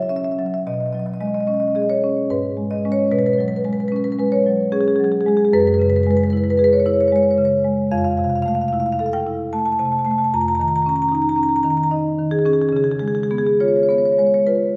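A solo marimba played with medium-hard mallets opens this contemporary classical passage, its woody, dark tone sitting up front as it moves freely in a rubato triple metre across a range spanning the low register and the high one. The mood is flowing and warm, with the harmony drifting through rich, open chords such as C#madd11, B69, F#9sus4 and Fmaj7 before settling on C#7 near 12.7 seconds. A wet recital-hall reverb in a church or concert space surrounds the smooth, percussive strokes, and the 14.8-second passage is cut from a longer piece.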